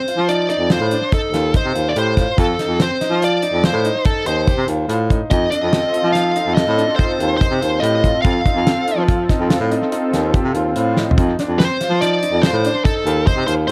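A damped, dry 70s drum kit with a fat snare and tight kick drives this bright, intricate progressive instrumental in 7/4 at 143 BPM. Underneath, a baritone saxophone plays the bass line in subtone with scooped notes, while a brilliant baby grand piano arpeggiates and a dark, overdriven lead guitar carries the melody through tape echo in F mixolydian over an F7 chord. A warbling, detuned sawtooth pad with chorus and tape echo sits in the background from 5.4 to 11.2 seconds, and a drum fill at 11.0 seconds leads into a brief return of the theme in this echo-heavy, small-room mix.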